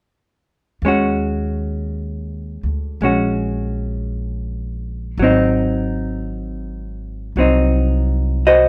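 From 0.8 seconds, a dark, clean, picked vintage hollow-body electric jazz guitar and a woody pizzicato upright bass sit up front together in this romantic, late-night slow swing jazz excerpt at 55 BPM, with the guitar comping over Ebm7 before moving to Ab7 at 5.2 seconds, all captured with close, detailed microphones and light reverb.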